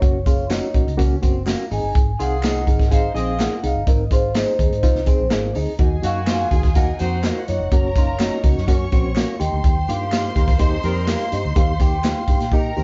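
Danceable and warm, this uptempo 1960s-style soul cut moves at 125 BPM in a straight 4/4, sitting in Ab mixolydian with chords shifting from Gb to Ab, then Ebm, Gb and Eb. A mellow vibraphone played with soft mallets carries the melody, its metallic ring shaded by a slow motor vibrato, while a reedy electric piano with fast tremolo fills in the accompaniment through its built-in speakers. Underneath, a foam-muted fingered electric bass gives a dark, round low end, and the natural country drum kit sits up front with a punchy kick, medium-tuned snare and hi-hat, closing with a drum fill at 12.5 seconds. A slightly broken-up, lo-fi electric guitar plays a compressed riff, with tambourine, egg shaker and group handclaps tucked in the background. A tight, clear horn section adds a smooth-topped second line from 2.2 seconds, and a lush, distant bowed violin section joins at 5.8 seconds with expressive vibrato. 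The whole band sounds as if playing live in one room under light reverb, with a rolled-off top that gives the recording a vintage feel.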